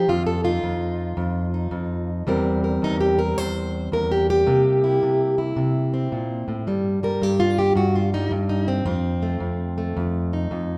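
The excerpt opens straight on a fingerpicked steel-string acoustic guitar, plugged in and playing alone from 0.0 to 10.8 seconds in an acoustic country blues style. The mood is gritty and soulful, set at 109 BPM in 4/4 with a swung eighth-note feel and centred in C mixolydian, tuned slightly under standard pitch at A4 = 439 Hz. The guitar's tone is dark and boxy with a parlour character, sitting up front and ranging from E2 to C5. Its harmony moves from F7 to C7, passes through a chordless stretch at 6.7 seconds, and returns to F7 at 8.9 seconds. A wet recital-hall reverb of about 1.2 seconds surrounds the playing, giving the sense of a church or concert hall, and the clip is cut from a longer piece.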